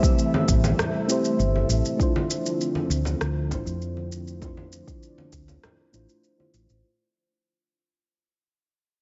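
A short cut from a smooth, wistful sunset chillout piece opens with a mellow FM electric piano and an airy, breathy pad sounding together over an overdriven electronic kick and a layered electronic shaker and rim click. Congas played with hard hands join at 0.3 s, ringing in a small room, and a dark, round hollow-body electric bass follows at 0.5 s, punchy and up front. The vintage electric piano warbles with chorus and digital delay behind a low-pass filter, while the detuned pad sustains long chords through chorus and phaser; both parts carry a filter sweep across the passage. The harmony moves from Am7 to Dm9, the deep kick drops out at 5.5 s, and the clip fades out throughout under a lush hall reverb with a rolled-off top end.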